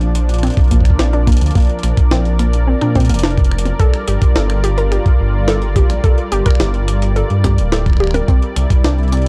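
A deep, rumbling detuned saw bass sits up front with tube saturation, joined by a thumpy, pitched-up electronic kick from 0.6 seconds in this glitchy, intricate IDM excerpt cut from a longer piece. A smooth, airy analog pad with chorus holds sustained chords moving from Bb to Gm7 to Cadd9, while a warbling, lo-fi pluck with chorus and tape echo plays arpeggios from 0.4 seconds. A gritty, compressed jungle-style sampler kit of finger snaps, hi-hat, snare and toms completes the dry, cassette-saturated sound.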